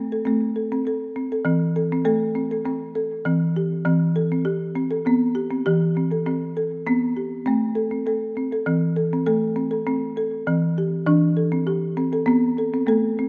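A solo folk marimba played with medium mallets carries this hypnotic, gentle world meditation in a straight three, its woody, rustic hardwood bars sitting up front through tape echo and a wet echo chamber as the harmony rocks between A minor and E minor across a short excerpt cut from a longer piece.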